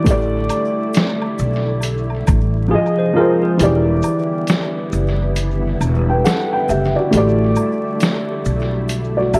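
A dark, woody upright piano with a boxy, cassette-softened tone opens this hazy, melancholic lo-fi hip hop fragment, floating over silky, slow-attack chords from a soft string machine colored by phaser and ensemble chorus. Pizzicato upright bass with gut-string thump joins alongside a compressed, pitched-down sampler-style drum kit and a faint egg shaker and woodblock, both carrying tape echo, with swung sixteenths giving a lazy lilt. The drums drop out at 2.7 s while a worn, slightly out-of-tune tine electric piano adds a brief echoing second line, and once the kit returns at 3.6 s the kick stays muted under an echo-heavy mix dusted with vinyl crackle.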